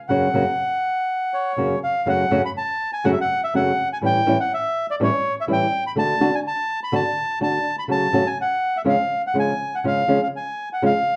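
Set further back in a club with a wet, short reverb and a softened top that fades out above 10.4 kHz, this excerpt is a dramatic, sultry tango in F# minor at 123 BPM in 4/4, played rubato and tuned to A4 = 442 Hz. Up front, a reedy, smooth bandoneon carries the melody between C#5 and B5. Beside it, an acoustic flamenco guitar supplies thumb-plucked accompaniment in a dark lower register from F#2 to F#4. The harmony opens on F# before turning to F#m at 2.1 seconds, then moves through A7, D and F#m/C# to close on C#. The guitar stops at 10.9 seconds, leaving the bandoneon to sound alone until 11.2 seconds.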